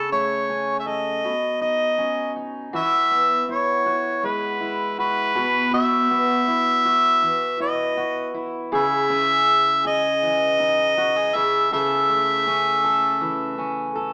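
A warm harmonica carries the melody up front in this short acoustic pop excerpt, its smooth top floating over a dark, full-bodied fingerpicked jumbo steel-string acoustic guitar that is also placed close. At an easy-going 80 BPM in E major, the heartfelt piece moves through chords such as A/C#, Badd9, Eadd9 and C#madd9, shifting into a new section at 2.7 seconds. The pair sound like a band playing live in a stone room with moderate reverb, filtered through an AM radio tone.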